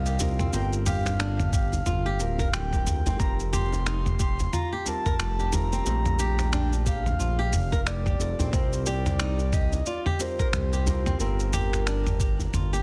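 Organic downtempo with an earthy, mystical mood, this fragment moves with a swung sixteenth-note feel over a chord cycle that drifts between suspended and seventh harmonies. A breathy, flute-like synth lead carries the melody, its soft, sustained tone touched with vibrato, chorus and digital delay, while a felt-muted upright piano sits in the background as a mellow, intimate accompaniment with audible action noise, pumping from sidechain and echoing through its own delay. Beneath them, a smooth gliding synth bass sits up front, detuned and sustained with portamento. A fingerpicked flamenco guitar adds acoustic arpeggios with finger squeak and delay. Rhythm comes from a gritty, tape-warm sampler-style soul kit of finger snaps, shaker and toms with soft clipping on the snare, a distant, very quiet djembe with metal rattles, and a thumpy electronic kick that enters at 1.5 seconds. The whole sits in a small room ambience under a dense, heavily limited modern master.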